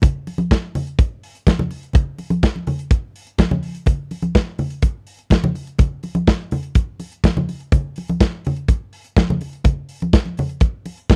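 A straight 4/4 disco groove, sultry and danceable, rides on an acoustic studio kit with a punchy kick, medium-tuned snare and hi-hat, its sound mid-forward with a rolled-off top, while up-front congas bring thick skins and hard hands, the short excerpt moving into a new section at 3.9 seconds within a dry, close 1970s-style studio sound.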